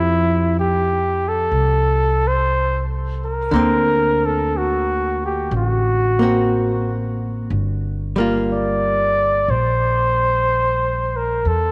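A jazz ballad with a tender, romantic mood, moving at a slow, unhurried pace with a gentle swing. A trumpet in a bucket mute carries the melody up front, its veiled, dark tone touched with light vibrato and a smooth top. Beneath it, a miked and amplified archtop guitar plays picked accompaniment with a clean, compressed, hollow-body sound, dropping out at 11.5 seconds just before the others. An upright bass, plucked and woody with steel strings, sits up front as well and anchors the low end. A moderate plate reverb adds a lingering sheen around the trio as the harmony moves from Fmaj9 through D7b13 to Gm7 in this short section cut from a longer piece.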